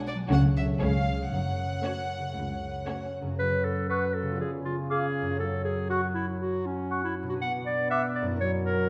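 Set in a straight 4/4 at 119 BPM, this playful, whimsical film cue in F# minor has a sneaky, magical air and is cut from a longer piece. Up front, an acoustic concert harp plays ringing, fingerpicked arpeggios throughout. Its opening bars bring in bowed string sections played sul tasto with soft attacks: an intimate chamber violin section carries the melody with light vibrato, and a rich, floating studio violin section adds a distant second line. Beneath them, a viola section supplies accompaniment in the background, while a cello section and a dark double bass section hold the bass. At 3.4 s the strings give way to a bright, present clarinet on a second line and a warm French horn section sustaining chords. Shortly after, a mellow, hollow silver flute with crisp attack and vibrato and a roomy oboe in classical style join as the harmony passes through C#7b9 and Bm. A wet scoring-stage reverb gives the cue a spacious, atmospheric finish.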